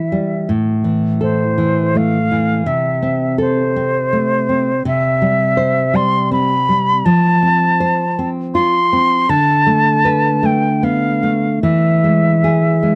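Solemn and yearning, this 13-second excerpt of a romantic duo moves in a rubato 3/4 at roughly 74-85 BPM. An airy silver concert flute with vibrato and a crisp attack carries the melody, while a dark, full-bodied nylon-string guitar fingerpicks the accompaniment through a progression that opens on A minor, passes through C and F, and comes to rest on E. Both instruments sit up front in a dry, close recording with the intimate feel of a 1970s studio.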